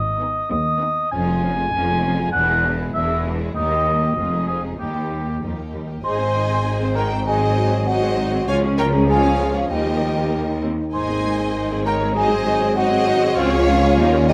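Playful and mischievous, this whimsical cinematic cue in Ab major moves at 98 BPM in a straight 2/4, opening with a mellow, roomy oboe up front over rich bowed cellos and double basses, with a lush violin melody, a close second violin line and smooth violas in the background. At 6.0 seconds a bell-like, delicate celesta joins the melody alongside a dark clarinet, distant French horns holding sustained chords and airy flutes, all in a moderate scoring-stage reverb.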